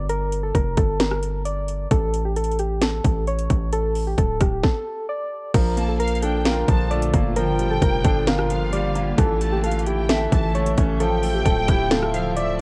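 A half-time trap groove at 132 BPM drives this melancholic, hard-hitting hip hop cut in D harmonic minor, where overdriven trap drums with a hard-clipped kick, sharp snare and metallic hats pound up front over a punchy, heavy 808-style bass, soft, round electric-piano-like synth keys carry the melody with chorus, tremolo and delay, and after a stop from 4.6 to 5.5 seconds a clear concert grand piano, a lush studio violin section with delay and a cloudy, evolving granular pad fill out the Bbmaj7-to-Dmadd9 progression, all under a worn, warbling cassette-tape ambience.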